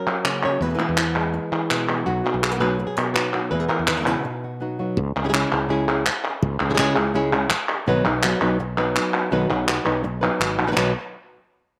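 Crisp palmas hand claps drive a straight 165 BPM pulse in 4/4 for this proud, festive flamenco cut in B major, where a dark, woody flamenco guitar on old strings carries the fingerpicked melody up front over a direct fretless electric bass, while a second fingerpicked flamenco guitar with audible finger squeak adds stabs in the background through a slapback echo, dropping out from 5.0 to 7.9 seconds after a brief break at 4.2 seconds, and the whole is captured dry and outdoors.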